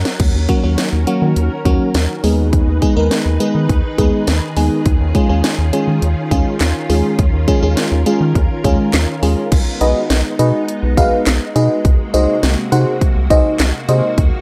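Opening on a drum fill, this driving, cool synth-pop excerpt sets a punchy, up-front house drum kit with cracking snare against a rubbery, nasal square bass and a silky vintage string machine with ensemble chorus, while a lush, dreamy FM electric piano with a soft pad layer, colored by chorus and phaser, joins at 0.5 seconds, the whole captured as a dry, gritty hardware recording with light reverb that moves into a new section at 9.5 seconds.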